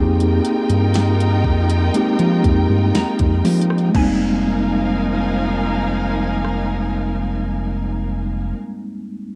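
A mellow tine electric piano, a lush bowed string section, a round analog bass and a faint glassy wavetable pluck open together on an Fm11 chord in this slow, longing late-night contemporary R&B fragment in F minor, set at 60 BPM in a straight 4/4. A smooth drum kit joins at 0.2 seconds with a soft kick, fat snare, rim click, smooth hats and crash cymbal, its produced electronic sound tinted by cassette tape. The bass sits deep and dark up front with a fast attack and sustained notes, while the strings hold expressive chords with vibrato and portamento beneath a smooth top. In the background the crystalline, nasal pluck decays high above, carrying chorus, tape echo and a filter sweep over a noise layer. The drums stop at 6.7 seconds, the strings, bass and pluck fall away at 8.5 seconds, and the clean electric piano, heard as if through built-in speakers, carries on alone, all within a digital ambience and a home cassette recording.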